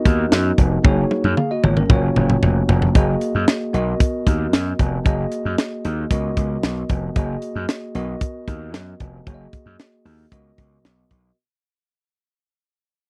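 A gritty, overdriven slap bass punches up front beside a tight funk drum kit with a high-tuned snare and a bell-like tine electric piano in this smooth, danceable early-eighties boogie funk cut, where a drum fill runs from 0.8 to 3.0 seconds before the dry, close studio sound begins a fade-out that lasts to the end at 11.4 seconds.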